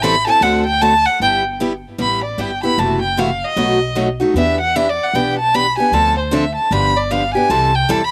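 Swinging eighths at 152 BPM drive this virtuosic acoustic jazz manouche excerpt in G major, where a warm, bowed violin with vibrato and portamento sings an expressive solo up front from start to finish over a bright, boxy picked parlour guitar and a woody, thumpy pizzicato upright bass on gut strings, recorded dry outdoors as the chords pass from D7 through Em7 and G7 to C6.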